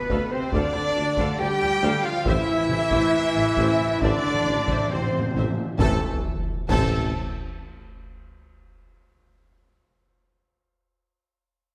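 Close, dry taiko drums struck with hard sticks drive this heroic, dark passage from an epic orchestral film score, cut from a longer piece, moving at 68 BPM in 4/4 in A minor. Beneath them, mellow French horns and trombones sustain chords over a harmony that moves from Dm to Am. Clear trumpets add stabs, while a rich, distant double bass section, a tuba and cellos carry the low end. Very quiet, lush violins hold the melody with expressive vibrato, joined by a second violin line and a pure silver concert flute, as violas fill in the accompaniment. Timpani with calf heads join with a fill at 2.3 seconds, and at 5.8 seconds a huge, bright impact and sub drop land alongside concert snare, bass drum and dark clash cymbals for a band accent. The whole orchestra sits in a wet scoring-stage reverb, and the impact carries on until 9.4 seconds.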